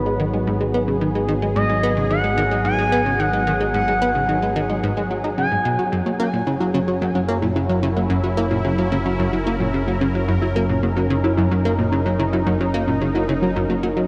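This excerpt opens with a smooth, mellow portamento lead singing over a bright, airy pad and a fat, saturated analog bass, while a punchy, funky plucked bass riff sits up front, all in an ambient, sequencer-driven space-music style at 110 BPM with a cosmic, expansive mood. The lead carries chorus, cassette tape colour and tape echo and stops at 5.9 s as the harmony moves from G#m7 to F#7. At 6.1 s a warbling, dusty, nasal pluck enters in the background with lo-fi arpeggios, all bathed in a huge, wet reverb.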